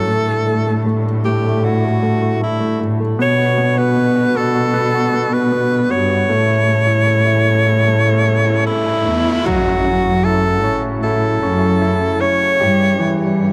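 A slow, straight 4/4 pulse at 77 BPM carries this pop ballad excerpt, its mood full of longing and emotion. A clear alto saxophone sings the melody up front with jazz-style vibrato, set over a grand piano whose intimate tone brings deep bass, long sustain and audible action noise. Beneath them, a muted cello section plays the bass line con sordino, bowed and veiled with a smooth top, while a distant, roomy French horn section holds dark sustained chords in the background with a loose, classical feel. The harmony moves from A7sus4 through Gmaj7/B and A7 before shifting to F#m7 at 9.5 seconds and C#dim at 12.6 seconds. An electronic riser builds in the background from 8.2 seconds into an impact at 9.5 seconds, marking the start of the second section, all within a light, small-room reverb.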